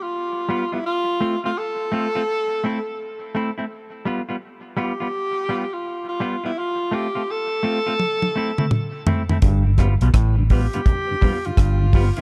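Warm and sunny, this roots reggae excerpt at 84 BPM in G mixolydian opens with a punchy, roomy tenor saxophone melody and bright, picked electric guitar both trailing dub echo, before a dry, tight-kicked drum kit fills from 8.0 seconds. At 9.4 seconds a round, foam-muted fingered bass, a stringy overdriven clav riff and low-tuned congas arrive, and at 9.7 seconds a mellow tonewheel organ on slow rotary speaker joins to fill out the dark, near-dry production.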